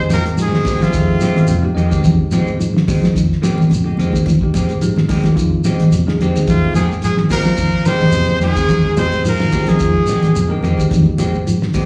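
Afrobeat at 108 BPM in F dorian, defiant and hypnotic, this live club excerpt rests on a single Fm9 chord, with a cloth-damped, thuddy drum kit, a round foam-muted fingered bass, quiet high-tuned congas and a grainy shekere driving a lightly swung groove. Two semi-hollow electric guitars share the pulse, one playing clean arpeggios in the background and the other dark stabs touched with subtle chorus and slapback echo, while a bell-like tine electric piano accompanies throughout and adds a fill at 1.2 seconds. A clear trumpet carries the melody in brief horn statements at the start and again from 6.5 seconds, backed by an edgy tenor saxophone and a raspy, gritty baritone saxophone, all heard through the venue's PA with moderate club reverb.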